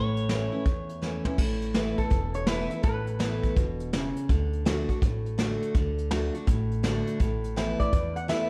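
This honky-tonk and classic country excerpt moves at a brisk 165 BPM in 4/4 with a swung eighth-note feel, and its mood is nostalgic and heartfelt. A twangy, slightly broken-up electric guitar states a brief melody before dropping out at 1.2 seconds. Just before that, at 1.0 seconds, a soft brush drum kit plays a fill into the next section. Throughout, a bright, full-bodied dreadnought acoustic guitar sits up front, picking the accompaniment over a woody, thumpy pizzicato upright bass on gut strings, while the brushed kit adds dark cymbals, a tight kick and a medium-tuned snare in a roomy, distant space. A lap resonator guitar, played with a steel bar and fingerpicks, takes a nasal, metallic solo line that surfaces at 2.0 seconds and again at 7.8 seconds. The harmony rests on A, Asus2 and D, and light reverb gives the whole production a dark, warm finish.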